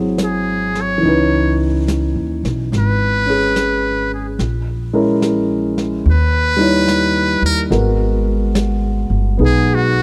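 Melancholic and wistful, this slow jazz ballad in G# minor at 72 BPM swings gently in 4/4 as a buzzy, thin trumpet with a metal mute sings a close-miked solo with light vibrato and scooped notes, entering at 0.2 seconds over a deep-bassed concert grand piano, a woody pizzicato upright bass and a vintage brush kit with a rolled-off top, all captured in a dry, close 1970s-style studio sound through chords moving from G#aug7 and C#m9 to D#7b9 and G#m9.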